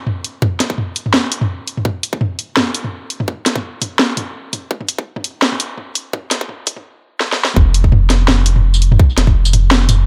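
A layered drum kit of hi-hat, tambourine, toms and a cracking snare opens this cinematic, heavy half-time drum and bass piece with a gentle swing, joined at 0.4 seconds by a tight electronic kick that was re-recorded in a small room, both sitting up front. A filter sweep carries the build-up until a drum fill at 7.2 seconds leads into the drop at 7.6 seconds. There, a deep, thick sub bass with tube saturation and a fast attack arrives and sustains up front, all within an echo-heavy mix of light reverb and digital ambience.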